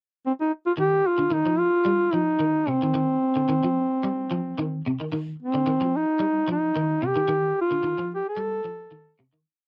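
A dry, close 1970s-style studio sound with light reverb frames this defiant, intense afrobeat piece at 110 BPM in C dorian, where a mellow, up-front duduk enters at 0.3 seconds with scooped, folk-style call phrases built on a short motif over a Cm groove, while a twangy, slightly broken-up electric guitar picks an ostinato of arpeggios, coloured by ensemble chorus, from 0.8 seconds on through the fade-out that begins at 7.3 seconds.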